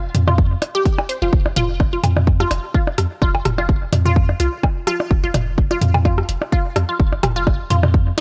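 Minimal techno at 127 BPM with a light 16th-note swing, sparse and hypnotic, cut from a longer piece and sitting on an F5 chord. A deep sine sub bass with a pitch-drop attack and sidechain pumping opens, joined by a punchy, up-front electronic kick, while overdriven metallic hi-hats and a click kit of blips, rim clicks and toms with tape echo complete the groove. Over this, a squelchy, resonant sawtooth blip pluck with a moving notch, phaser and tape echo plays a riff between F4 and C5 in a close, dry space.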